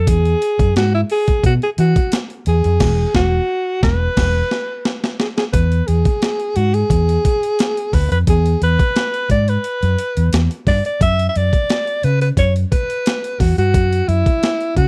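A dry, close 1970s-style studio sound frames this playful, strutting funk excerpt at 88 BPM in straight 4/4. Up front sit a dark, round, foam-muted fingered electric bass, a gritty, compressed breakbeat sampler-style kit with a thumpy kick, and a breathy, whispered alto saxophone carrying the solo melody with vibrato and a soft attack. The band hits accents from 2.8 seconds, and a drum fill leads into a new section at 5.5 seconds, where the harmony moves from Eadd9 to E and then to F#7sus4 at 11.0 seconds.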